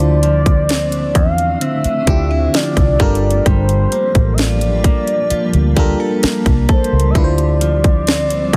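A moody, longing contemporary R&B fragment at 65 BPM in D minor opens with an up-front trap kit of hard-clipped kick, sharp snare and metallic hats over a dark, foam-muted fingered electric bass, while a glassy, bell-like FM electric piano with chorus, a clean direct-recorded guitar playing arpeggios through a phaser, and a cloudy, blurred granular pad with built-in reverb and sidechain pumping sit beneath a round, warbling horn-like synth lead with vibrato, portamento, chorus and tape echo, the harmony moving from Dm9 to Gm9 at 3.0 seconds and back at 7.2 seconds within a dense, heavily limited master.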